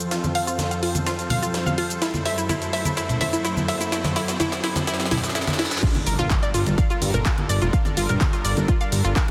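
Dreamy yet driving, this progressive house excerpt at 126 BPM in G dorian opens with a build-up, as a lush, airy supersaw pad holds sustained chords under a filter sweep, a round, detuned analog pluck spins chorused, delayed arpeggios, bright, saturated congas add percussion, and an overdriven house kit with a cracking snare, handclaps, hi-hat, shaker and crash plays a fill. A very quiet riser and reverse cymbal lead into the drop at 5.8 seconds, where a punchy, up-front electronic kick lands with an impact and a fat, thick sawtooth bass joins at 6.1 seconds, the chords moving from F through F#m7b5 to Gm7. The pad, pluck, congas and bass pump against the beat, all set in a moderate hall reverb within a dense, heavily limited master.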